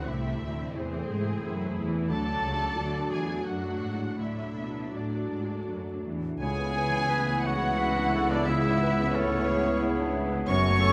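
In a rubato 3/4 at roughly 79-91 BPM, this bittersweet, longing film-score excerpt unfolds in C# phrygian, drifting from Am to D and settling on C#m7 at 6.4 seconds. Muted, con sordino violin sections carry the melody and a second line, the symphonic group dark and lush in the background while the chamber group sounds distant and veiled, over a felt-muted upright piano whose intimate, vintage tone lets its action noise be heard. Violas add rich, soft-attack accompaniment, a fingerpicked concert harp rings in the background with mellow arpeggios, and cellos and double basses hold the low end with bowed, vibrato-laden depth. At 6.4 seconds the woodwinds and brass join: an airy, hollow flute traces a very quiet second line, a smooth-topped clarinet sits in the background, and a punchy cor anglais adds a solo voice, while a French horn section sustains chords with light vibrato. A moderate recital hall reverb gives the ensemble a gentle, enveloping space.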